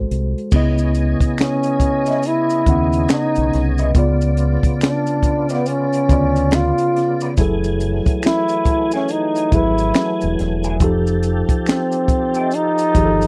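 A swung, unhurried groove from a compact cocktail drum kit, with its punchy kick, high-tuned snare, hi-hat, dark cymbals and finger snaps, anchors this sultry neo-soul R&B piece alongside a round, deep dub fingered bass and a mellow tine electric piano, with close maracas and handclaps joining shortly after. Up front, a breathy trombone carries the melody with scooped notes and light vibrato over a full, lightly overdriven tonewheel organ turning through a slow rotary speaker, while from 2.1 s a slightly broken-up guitar through a small old amp adds a lo-fi second line with wah and lush chorus. The dry, close 1970s-style studio sound keeps the jazzy chords intimate and soulful.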